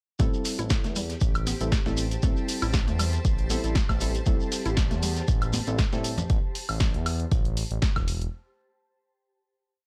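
Smooth and warm, this short deep house piece rides a steady 118 BPM swung groove in A minor, built as a single drop over an Am7 chord, with an up-front four-on-the-floor electronic kick, a punchy overdriven analog drum machine playing hats, snare and woodblock, a gritty looped breakbeat kit in the background, grainy hand-played shekere sixteenths, and very quiet, bright congas that join at 4.3 seconds. A smooth, nasal detuned synth bass carries a dotted rhythm beneath dark, full-bodied syncopated chord stabs and a woody, mallet-like FM pluck cycling a 16-step arpeggio, both with chorus, analog delay and sidechain pumping, while a cloudy granular pad drifts in at 1.0 second with slowly shifting chords. The sound is dry and tape-gritty, with the bass, kick, analog drum machine and breakbeat kit holding on after the upper parts fall away near 6 seconds.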